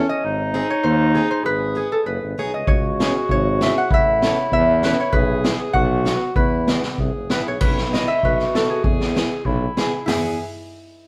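A ringing, fingerpicked concert harp carries the melody up front in this bouncy, festive alpine folk dance-band excerpt in a loose, rubato 2/4, joined by a vintage clarinet on the second line, a bright, boxy parlour steel-string guitar picked in the background, a distant, roomy tuba with light vibrato on the bass, and a street-band drum kit with a high-tuned snare and boomy kick that enters at 2.7 s, the band playing live together in a stone room with moderate reverb.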